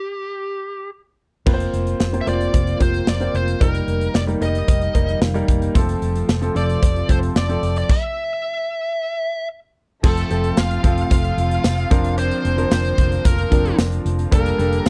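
This uplifting, romantic 1980s-style pop piece in F major at 112 BPM opens with a bluesy, overdriven lead guitar playing the melody alone, its picked, distorted tone given a slapback echo. At 1.5 seconds the band arrives: an up-front, polished acoustic drum kit with a punchy kick, medium-tuned snare, hi-hat, crash and tambourine, a very quiet, dry cowbell, and a dark, foam-muted fingered electric bass that stays low and round. A clear concert grand piano carries the accompaniment with deep bass, long sustain and audible action noise, and it adds a short fill partway through, while a silky, vintage string machine holds soft sustained chords beneath it. The arrangement halts around 7.9 seconds, and when it resumes at 10.0 seconds a lush, expressive violin section joins in the background as a second line, bowed with vibrato and portamento and carrying its own slapback echo. The sound is a dry, close 1970s-style studio recording with little reverb, and the passage is cut from a longer piece.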